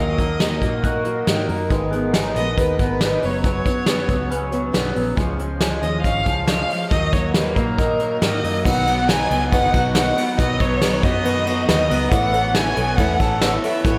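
Bathed in a wet recital-hall reverb that gives a big arena sound, this bittersweet, wistful jangly indie pop excerpt sets a distant, smooth bowed violin melody with vibrato and digital delay over a shimmering, octave-doubled fingerpicked twelve-string acoustic guitar, twangy, slightly broken-up arpeggios from an electric guitar through a small old amp with phaser and slapback echo, a round, foam-muted vintage electric bass, and a soft brush drum kit with dark cymbals that comes in at 0.2 seconds and sits up front.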